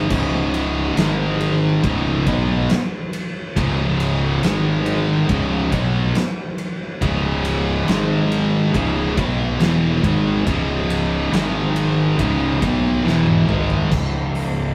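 Brooding and heavy, this stoner and doom metal excerpt crawls at 70 BPM in C# minor, with an up-front scooped high-gain guitar and a dark, double-tracked fuzz guitar in the background grinding a riff over C#5 and G#5 power chords that turn to C# minor, a growly overdriven fingered bass, and an oversized low-tuned acoustic kit with a boomy kick, fat snare and pumping room sound that closes with a drum fill at 13.0 seconds, all captured in a rough rehearsal-room recording.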